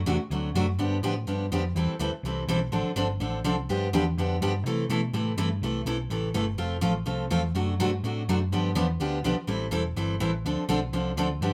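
Charming and playful, this short cut from a longer piece is acoustic string swing in the jazz manouche style, racing along at 249 BPM in 4/4 with a light swing on the eighths, in C major. A hollow-body short-scale electric bass, picked and amped, carries the low end with a dark, round tone from the very start, ranging from E1 up to C3. A picked steel-string acoustic guitar sits up front as the accompaniment, entering at 0.1 seconds with a bright, auditorium-sized sound, and finger squeaks come through. The harmony moves through jazzy changes like D7, G7, Am7, Dm7 and a resting C6 before the second pass turns to F and D7/F# and heads back through G7 toward Am7 and Dm7. A moderate studio reverb gives the pair a natural sense of space across both statements of the theme, which run until 11.5 seconds.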